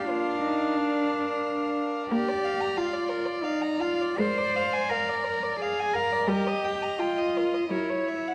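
From the first second a string quartet plays together in a serene, lyrical slow romantic movement in Bb major, flowing in 3/4 at 87 BPM with rubato, as a pure, floating sul tasto violin carries the melody over a second violin's smooth-topped line, a rich viola accompaniment and an intimate, up-front cello bass with light vibrato and airy bow, all set in a moderate scoring-stage reverb with a dark, warm production before the harmony turns to Gb7 at 7.7 seconds.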